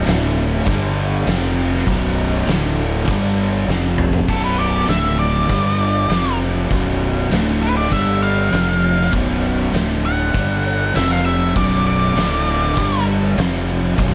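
A crunchy overdriven guitar and a dark, thick fuzz guitar, both double-tracked in the background, open this hypnotic, sludgy stoner and doom metal fragment on a cycling power-chord riff over a growly, up-front fuzz fingered bass and an oversized low-tuned drum kit with a punchy kick, fat snare, dark cymbals and a pumping stone-room sound, until a drum fill leads at 4.3 seconds into an octave-fuzz lead guitar solo with analog delay that runs until 13.0 seconds, all in a dry, close mix.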